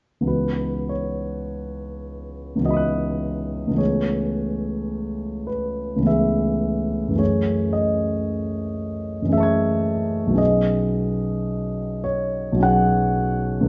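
An intimate concert grand piano opens the fragment alone, spanning B1 to G#6 with deep bass, long sustain and audible action noise placed up front in a moderate recital-hall reverb whose treble is gently rolled off. This mysterious, wistful impressionist piece in C# minor moves in a rubato 3/4 at roughly 48-57 BPM, drifting through C#m11, Amaj9/C#, F#m9 and B69 chords. The 13.7-second excerpt is cut from a longer piece.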